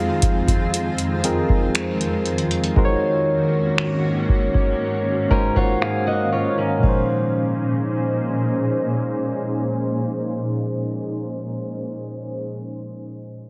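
Muted, felt-like synth keys with a soft chorus and a cloudy, evolving granular pad open this moody, sensual contemporary R&B excerpt over Fm7 and Ab9sus4, as a booming analog drum machine with deep kick, metallic hats, finger snaps and crash plays from 0.2 to 7.1 seconds, a bright picked archtop guitar adds tape-echoed arpeggios from 5.3 seconds, the keys play a fill before the harmony settles on Bbm11 at 6.8 seconds, and the whole sits in a heavily compressed, low-passed radio sound with light reverb.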